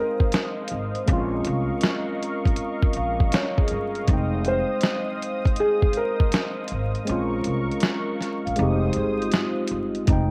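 A felt-muted upright piano opens this reflective, nostalgic lo-fi hip hop excerpt, its soft, intimate melody carrying audible action noise and a short sustain through a low-pass filter and tape echo. Beneath it, a worn, slightly out-of-tune tine electric piano plays accompaniment through its built-in speakers, while a detuned sawtooth pad with a soft attack and chorus holds sustained chords. Moments later, a gritty, compressed sampler-style drum kit with a thumpy kick sits up front, and a woody pizzicato upright bass joins, all at a relaxed 80 BPM with a swung 16th-note feel in F minor. At 3.0 seconds a vibraphone played with soft mallets and the motor off adds a metallic, ringing second line, and the piano melody ends at 7.0 seconds just before the kick drops out at 7.1 seconds. The harmony drifts between Fm7 and Bbm7, and the whole track is bathed in moderate spring reverb, cassette grain and vinyl crackle, giving it the cosy feel of a warm home tape recording.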